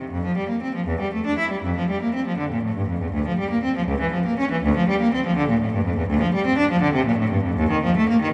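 Classical, a baroque-style suite movement for unaccompanied cello, radiant and flowing in 6/8 with a free, rubato feel. A single bowed cello plays alone from 0.0 to 8.3 seconds, ranging from Db2 to E4 with a clear, intense tone and light vibrato, sitting up front yet with a distant quality. A long, wet cathedral reverb surrounds the instrument and gives this short fragment of a longer piece a soft-topped, resonant glow.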